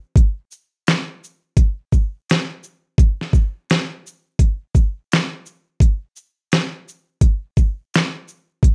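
Hip hop at 85 BPM in 4/4, with a swing on the sixteenths and a reflective, hazy mood, cut from a longer piece. A dubstep drum kit carries the whole fragment, running from 0.2 to 8.7 seconds with hi-hat, kick drum, shaker and snare drum. The kit sounds electronic and layered, with a knocking kick, a deep snare and crisp hats sitting up front in the mix. Vintage 12-bit sampler grit and a tape-warm tint roughen the drums. Light reverb and a rough home-demo mix give the recording a loose, unpolished character.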